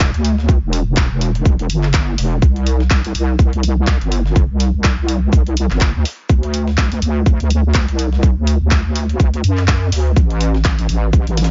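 A heavy, saturated wobble bass dominates this aggressive, swaggering bass house cut, its detuned square-and-sine unison tone thickened by chorus and overdrive and pumping against a tight, up-front electronic kick. Layered garage handclaps and hi-hat ride a 16th-note swing, while a very quiet, gritty sampler-style kit adds shaker, hi-hat and a medium-tuned snare underneath. The mix is dry and dark, with the top end rolled off above 7.5 kHz, and the kick drops out at 11.2 seconds as the other parts carry on to the end of this short piece cut from a longer track.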